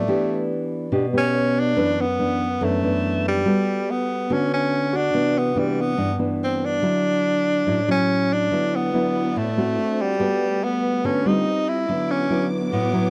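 Sunny and relaxed, this bossa nova excerpt moves at 142 BPM in D major, with a breathy tenor saxophone carrying the melody up front in a clear, jazz-style voice marked by light vibrato and scooped notes, while a thumb-plucked nylon-string guitar supplies acoustic, classical-flavored accompaniment beside it. A polished grand piano with deep bass sits in the background until 5.3 seconds, and a lush bowed string section enters at 8.5 seconds with soft-attack sustained chords. The harmony drifts through rich chords such as Em7, Gmaj9 and Cmaj9, all captured in a dry, close 1970s-style studio sound.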